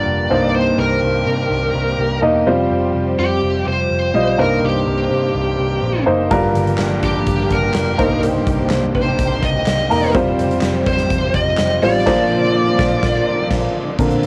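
A bright, distorted lead guitar carries the melody up front over a clear baby grand piano, dark foam-muted bass and lush bowed strings in this bittersweet, driving piano-driven pop excerpt in C minor at 125 BPM, with a huge arena drum kit with boomy kick entering at 6.3 seconds, a band accent from 12.1 seconds, and a fingerpicked acoustic guitar and grainy egg shaker appearing at 14.0 seconds, all under a light reverb and cassette-tape home-recording haze.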